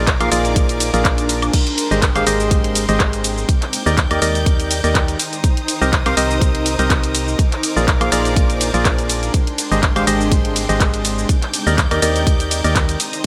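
From the first moment, a hollow, percussive organ stab drives this feel-good piano house excerpt with an up-front riff, coated in chorus and digital delay and pumping against the beat. Beneath it, a dark, organ-like FM bass plays decaying notes, while a lush, bowed symphonic string section holds clear, biting chords with vibrato in the background. A cloudy granular pad adds a blurred, evolving haze with its own reverb, and the strings, bass and pad all breathe with the same sidechain pumping. From 0.1 seconds a punchy electronic kick and a bright house kit of handclaps, hi-hat, ride, crash, shaker and woodblock sit up front with a gentle swing. The uplifting harmony cycles through Bb7, Abmaj7, Ebmaj7 and Cm7, framed by light reverb and a glossy 1980s-style digital sheen.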